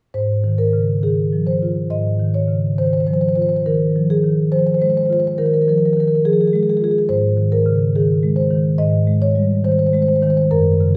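A solo marimba played with soft mallets opens the excerpt at 0.1 seconds, its rosewood bars giving a woody, round and mellow tone. This contemporary classical piece has a playful, flowing mood, moving in 4/4 with a free, rubato feel. The marimba covers a full register from Gb2 up to Eb5, sounding close-miked and up front. Its harmony moves from Ab6 to Ebsus24 at 3.6 seconds and settles on Ab at 7.1 seconds. The room adds a generous recital-hall reverb, so the short passage, taken from a longer work, carries the resonance of a church or concert hall.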